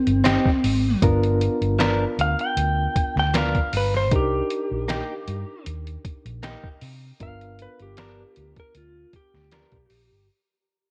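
A clean lap steel guitar carries the melody up front, played with fingerpicks and slide and shaped by volume swells, in this soulful, mournful straight-eighth soul blues excerpt at 78 BPM, which fades out across its full 10.3 seconds. Beneath it, a reedy electric piano with fast tremolo supplies accompaniment, a dark, foam-muted fingered bass sits round and punchy, and a compressed, pitched-down, muffled sampler-style drum kit plays a thumpy kick, medium-tuned snare and hi-hat. A direct-recorded clean electric guitar adds picked stabs over chords moving from Abmaj7 to G7#9 and Cm7, all in light digital ambience.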